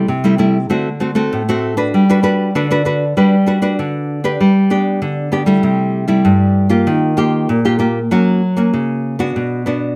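A straight samba pulse in 4/4 at 97 BPM carries this sunny, playful cut from a longer piece in G major, tuned to A4 = 437 Hz. A solo nylon-string guitar plays throughout, fingerpicked in a classical manner and sitting up front, with a woody tone and the warm character of old strings, moving between G2 and B4. The opening passage moves from Am7/C through D7 to Gmaj7. From 4.4 s a second passage takes a more adventurous route, running from G and C6 through Ebadd9 and F# before arriving on Bm. A moderate studio reverb gives the guitar a natural sense of space.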